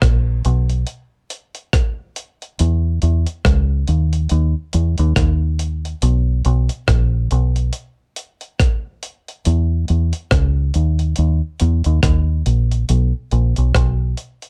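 A dry recording puts a dark, round, foam-muted electric bass and a gritty, compressed sampler-style drum kit up front in this sunny roots reggae excerpt at 70 BPM in B major. The deep dub bass holds down the low end from the start, while the tape-warm kit of thumpy kick, hi-hat and rim click carries a lightly swung 16th-note feel. The bass stops at 14.1 seconds, leaving the drums alone until 14.5 seconds.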